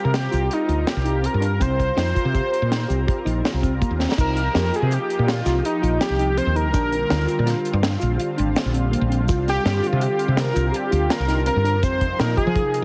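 A heavily compressed, radio-like sound with light reverb frames this brooding, driving progressive instrumental excerpt in C minor at 164 BPM in 7/4, where a thick, detuned unison lead with vibrato and analog delay carries the melody over a silky, slow-attack string pad with ensemble chorus, a woody, round fretless bass up front, mellow tine electric piano arpeggios through analog delay, a dark, dry reggae drum kit with a high-tuned snare and a fill at 4.0 seconds, and a grainy tube shaker tucked in the background, moving through Ebmaj7/C, Cm7, Bb and Fm7.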